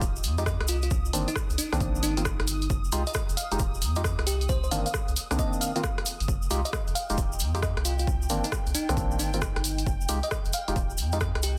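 A dense, heavily limited mix with light digital ambience carries this moody, late-night two-step garage excerpt in F minor at 134 BPM, where a punchy kick and analog drum machine hi-hats and rim clicks with a softly clipped snare swing over a thick, saturated sub bass and a grainy tube shaker, while hollow, nasal organ stabs with chorus and delay and a sparkling, bell-like FM electric piano melody entering at 0.4 seconds drift above an ethereal pad that pumps in the background through Fm9 and Cm9 chords.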